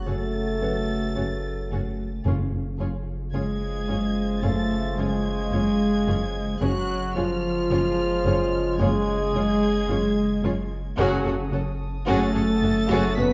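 Eerie and mysterious, this cinematic suspense cue sets a sul tasto chamber violin melody high over a mellow solo clarinet, a second violin line, dark violas, cellos and double basses, distant roomy trombones and background French horns holding sustained chords, a deep saturated sub-bass drone, a delicate bell-like celesta entering at 0.6 seconds, soft-mallet timpani at 2.2 and 11.0 seconds, and a faint extra violin texture joining at the end, all in a dark production with moderate scoring-stage reverb.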